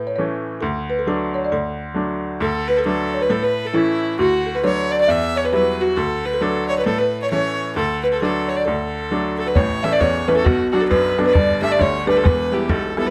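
Set in a swung 2/4 at 134 BPM, this cheerful, lively Celtic polka in D major moves with a bouncy, lilting step from the first beat. A folk marimba played with soft mallets carries the melody, its hardwood bars sounding woody, round and rustic, while a bright upright piano supplies the accompaniment with a brilliant, polished tone and short sustain that sits up front. At 2.4 seconds a rich fiddle joins on a second line, a single close player with light vibrato, a biting edge and an airy bow. The harmony circles around A and D with touches of Emadd9, then shifts toward Bm, Gsus2 and Em as the music moves into a new section. At 9.6 seconds a damped, tight bodhran enters to drive the final stretch. A wet studio reverb gives the ensemble a modest sense of space in this short excerpt cut from a longer piece.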